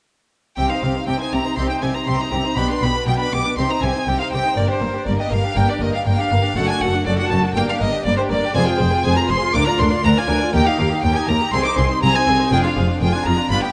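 Closely miked and detailed with a light reverb, this stormy, dramatic fragment of a baroque-style concerto movement sets a clear, focused solo violin against a bowed violin section with vibrato, the two carrying the melody together in a straight 4/4 from 0.6 seconds. Beneath them, a rich chamber violin section plays an expressive second line, while an intense symphonic viola section and a bright, plucked Flemish-style harpsichord, set in the background, fill out the accompaniment. Cellos, smooth and even, and a lush double bass section with a focused tone anchor the bass as the harmony moves through minor, major and diminished chords toward the cut at 13.7 seconds.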